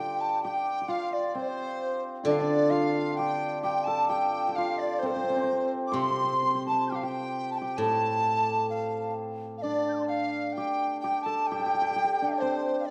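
A large dizi carries the melody in this short cut from a longer piece of Chinese traditional chamber music, its bamboo tone pure and straight, with a crisp attack and a buzzing membrane, set slightly distant in a moderate concert hall. A second, smaller dizi weaves a companion line above and around it, closer to the ear, airy and tongued with an audible chiff and a slightly unsteady tone. The hammered dulcimer sits up front with a shimmering, ringing second line in the middle register. Beneath them, a steel-string zither played with fingerpicks adds a silvery, resonant low accompaniment until it drops out at 10.5 seconds. The mood is festive yet graceful, flowing in a free rubato over a duple metre, and the overall production is dark and warm with a moderate hall reverb.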